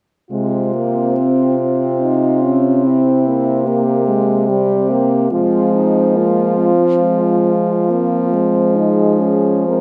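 This classical piece for horn quartet is yearning and solemn, moving at 71 BPM in 3/4 with uneven beats and rubato, in F minor. The four French horns play together from 0.3 to 9.8 seconds in this short cut from a longer work. The melody horn, set in the background, has a clear tone, and the second-line horn beneath it sounds distant and roomy. Both of these upper voices carry light vibrato and soft attacks. Up front, the accompaniment horn shares the mellow quality of the second line, while the bass horn matches the melody's clear tone. The harmony rests on F minor over C, moves to C7 at 2.9 seconds and settles back on F minor at 5.3 seconds, all within a moderate recital hall reverb.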